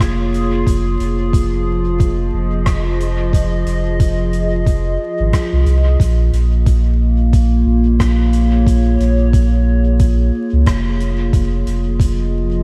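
A swung 4/4 groove with a 16th-note shuffle anchors this hazy, spacious ambient dub passage, cut from a longer piece. A soft, overdriven electronic kick carries the beat, dressed in studio reverb, while a natural-sounding soft-mallet kit adds distant hi-hat and rim clicks set back in a hall-like space and trailed by dub echo. Beneath them, a round, mellow sine sub bass holds deep, sustained notes with a quick attack. Over the top, a dark, warbling, tape-like pad of detuned square and triangle tones swells slowly into long chords, its chorus and built-in reverb giving it a nostalgic, vintage lo-fi haze. The harmony drifts between Bbm7 and Fm7 against a steady bed of vinyl crackle, and the drums drop away at 12.2 seconds, leaving the pad and bass to ring out until 12.6 seconds.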